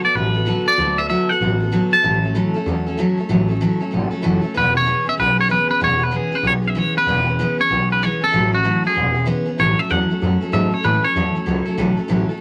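A twangy, up-front electric guitar melody, a bright, full-bodied picked dreadnought acoustic with audible finger squeak, and a woody, thumpy gut-string upright bass open this rollicking, retro rockabilly swing excerpt, with the electric guitar pausing at 2.5 seconds, returning at 4.6 seconds and taking a clean solo from 9.6 seconds over a moderate studio ambience dusted with vinyl crackle.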